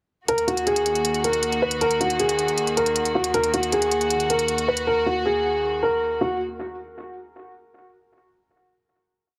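Crisp sixteenth-note electronic hi-hats with fast rolls drive a bouncy half-time trap beat at 157 BPM from 0.3 s until they drop out at 4.9 s, beneath a brooding, melancholic hip hop breakdown in Eb minor where a dark, boxy, up-front concert grand piano repeats a mellow looping melody like a sampled phrase, its audible action noise shaded by a low-pass filter and tape echo, while a distant studio string section floats soft-attack sul tasto chords through to 6.4 s, the whole piece sitting in light reverb and a dense, heavily limited modern master.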